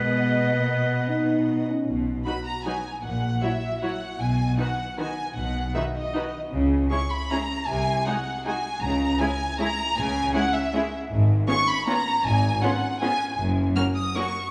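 Bathed in wet scoring-stage reverb, this festive, elegant orchestral ballroom waltz sways at 156 BPM in 3/4 with rubato, as an up-front violin section sings the expressive, vibrato-laden melody over a distant, lush second violin line with portamento, an intense viola accompaniment and a focused cello bass, while a bright solo clarinet and dark, far-off French horn chords colour the opening before the double basses join at 1.9 s and the key moves from B major to F# major at 11.1 s.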